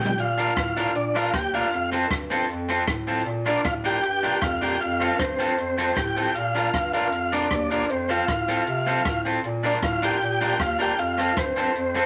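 Ska at 156 BPM in Bb major, joyful and cheerful, opening on a drum fill and band accent at 0.0 seconds before alternating between Bb and F chords throughout this short cut from a longer piece. A smooth, clean tonewheel organ with audible key click and fast rotary speaker carries the melody up front, joined by a twangy, picked electric guitar at the edge of break-up. A compact cocktail drum kit with a dry, punchy kick, rim click, hi-hat and toms is touched by dub echo, while a mellow, distant bass clarinet in classical style holds the low end, all set in a moderate studio reverb with a layer of vinyl crackle.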